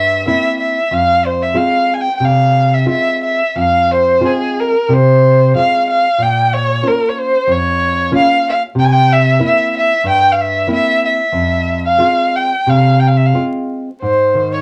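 A fado-style ballad in F harmonic minor, nostalgic and tender, moving at a rubato 92 BPM in 4/4 in this short cut from a longer piece. A single bowed violin carries the dark melody up front with vibrato, portamento and a smooth top, while a full-bodied, thumb-plucked nylon-string guitar gives deep classical accompaniment beneath it, both playing throughout. The harmony moves from C7 through Fm, Bbm and back, settling on Ab at 14.0 seconds, all set in a moderate studio ambience with a layer of vinyl crackle.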